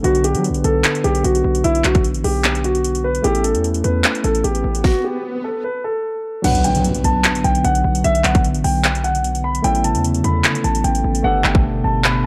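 A half-time trap groove at 150 BPM drives this melancholic, eerie hip hop excerpt in B minor, built on an up-front electronic drum kit with a hard-clipped, overdriven kick, sharp snare, metallic hats, handclaps and crash, plus a punchy, heavy 808-style bass. A dark, mellow concert grand piano carries the melody over a gritty, barky tine electric piano bathed in lush chorus. A background swell begins at 4.6 seconds and continues through a break at 4.8 seconds, rising into an impact at 6.4 seconds. From 7.0 seconds a glassy, ethereal FM pad sustains chords in the background, all within a dusky production touched by light digital ambience.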